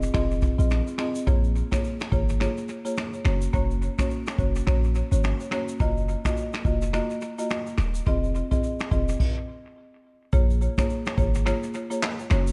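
Hypnotic and sultry, this afrobeats passage, cut from a longer piece, moves at 106 BPM in 4/4 with a swung sixteenth-note feel in B-flat minor, tuned slightly low at A4 = 435 Hz. A buzzing marimba played with medium mallets carries the accompaniment, its woody hardwood bars sounding dry and airy up front and trailed by tape echo. Underneath, a deep, boomy, warm 808-style bass with a sine tone, a noise layer and a fast, decaying attack holds the low end. A vintage brush drum kit with a punchy kick, rim click, shaker, finger snaps, handclaps and dusky crash cymbal sits close in a small room, its smooth, rolled-off top also touched by tape echo. The harmony cycles through Fm7, Bbm7, Gb and Ebmadd9, a stop arrives at 9.2 seconds, and a new section begins at 10.3 seconds on Bbm7, all set in an echo-heavy mix with small room ambience.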